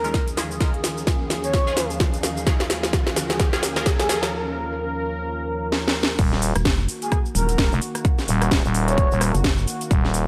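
Bass house with a swaggering, gritty mood and a swung groove, this excerpt opens on a build-up where a breathy, flute-like synth lead carries the melody over a sweeping, detuned sawtooth pad whose filter sweeps and pumps against the kick. Behind them sit a nasal, band-passed chord stab with phaser and delay and a blurred, granular cloud pad, while a very quiet riser sits beneath, and a punchy electronic kick and a house kit with cracking snare, metallic hats, cabasa, rim click and crash keep things moving with drum fills. The stabs, cloud pad and riser all stop at 4.3 seconds, opening a short break before the drop lands at 6.2 seconds. There a growling, thick FM bass comes in up front, joined at 6.6 seconds by a saturated, detuned wobble bass that pulses heavily with overdrive and sidechain pumping. The lead returns briefly with its soft vibrato and cassette-tinged chorus, and the kit sounds tape-warm and small-room, all set in light reverb.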